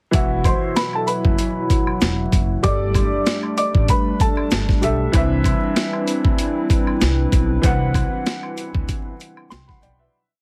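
Tough and dark, this short boom-bap hip-hop piece rides a gritty, up-front sampler-style drum kit with a thumpy kick, high-tuned backbeat snare and hi-hat, over a woody pizzicato upright bass that loops a deep line with chromatic approach notes. A slightly detuned vintage upright piano holds spread chords through cassette-tape colouring, while a second piano plays a short looping melody doubled in octaves from 0.5 to 4.7 seconds, a hollow, flute-like pad with chorus sustains mellow chords beneath, and maracas, woodblock and group handclaps sit in the background. The whole loop moves through Esus2, Gsus2 and Cmaj7 under heavily compressed radio-like sound, light reverb and vinyl crackle before fading out from 7.6 seconds.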